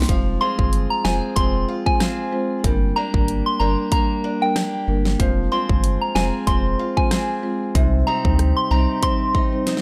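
An up-front pop drum kit with a punchy kick and fat snare, plus hi-hat and rim click, drives this bouncy, tough dancehall excerpt with a swung feel, ending on a drum fill at 9.7 seconds. A round, dark analog bass anchors the Fm, Gm and Cm changes until it drops out at 8.9 seconds, while a woody, mellow marimba and a boxy, picked acoustic archtop guitar playing arpeggios fill the accompaniment. Above them, a pure, gentle synth bell carries the melody in a high register, colored by chorus and phaser, all set in a small room ambience.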